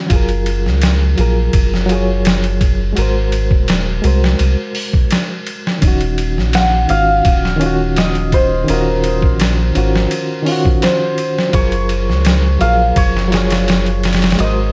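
A shimmering hammered dulcimer carries the melody from 6.5 seconds, its mellow, ringing tone trailed by tape echo across this hypnotic, melancholic trip hop clip from a longer piece. Beneath it, a reedy, bright electric piano supplies the accompaniment from the opening moment, treated with tremolo, vintage 12-bit sampler grit and its own tape echo. A soft dub sub bass sits deep and round, its sustained, fast-attack tone thickened by tube saturation. The sampler-style drum kit is up front: compressed, pitched down and gritty, with a thumpy kick, a medium-tuned snare, hi-hat and ride cymbal, all re-recorded in a small room. The harmony moves through Gbmaj9, Ab9 and Ebm9 before returning to Gbmaj9, while a layer of vinyl crackle hangs over the whole mix.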